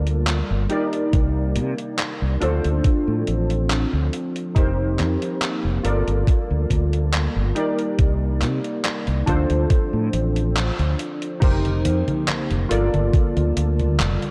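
Hazy and woozy, this vaporwave fragment drifts on a lightly swung groove, with warbling, detuned synth keys in front, softened by lush chorus and analog delay, over a mellow, tape-like pad that sits in the background with phaser and gritty 12-bit sampler texture. A warm, up-front fretless electric bass with analog chorus anchors jazzy ninth and suspended chords, while a detuned 8-bit drum machine scatters congas, handclaps, hi-hat and crash cymbal through gated reverb, joined at 1.1 seconds by a thumpy, sampler-style electronic kick. The band hits a brief accent at 10.6 seconds before the harmony turns at 11.4 seconds, with the drums re-recorded in a small room for a tape-warm sound.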